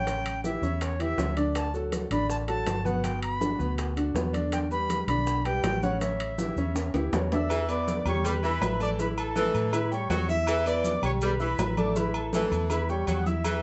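A festive, sunny salsa excerpt opens with a reedy wooden flute carrying the melody, its airy, tongued tone close-miked with vibrato and a slapback echo. Beneath it, a clear grand piano with long sustain plays the accompaniment, while a dark, round, foam-muted electric bass sits up front. The percussion fills in behind: damped congas with a thick skin, tight high-tuned bongos and cowbell, grainy maracas in the background, and ringing metal-shell timbales with agogo bells heard close and dry. During a drum fill, the flute stops at 7.1 seconds, a mellow, punchy trumpet section takes over the melody at 7.3 seconds, and a bright saxophone section adds a low second line from 7.5 seconds. A moderate small-room reverb gives the whole a compact, lively setting, and the top end is rolled off for a soft, vintage sheen.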